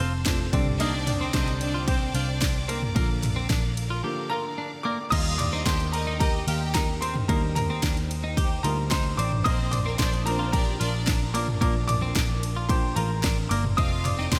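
Hopeful and anthemic, this piano-driven pop excerpt moves at 111 BPM in a straight 4/4, led by a bright, woody upright piano with slapback echo that takes solo passages throughout, with a brief break from 4.0 to 5.1 seconds. A punchy, overdriven house drum kit with a cracking snare and a very quiet, hollow group handclap come in at 0.3 seconds, over a round, foam-muted vintage electric bass and a clean, compressed twelve-string electric guitar riff. Lush studio strings hold sustained chords in the background, and a biting violin section with digital delay adds a second line from 0.8 seconds, set in a light studio reverb.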